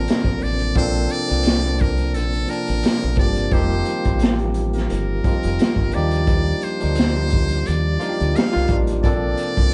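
A lightly swung sixteenth-note groove from a crunchy, saturated breakbeat kit with a tight kick and high-tuned snare anchors this relaxed, smooth R&B and neo-soul excerpt, where a deep, round fingered electric bass sits under a barky tine electric piano and a very quiet tonewheel organ on slow rotary, a buzzy metal-muted trumpet carries the melody with light vibrato, and a clear, tight horn section adds brief stabs at 8.0 seconds within a band accent.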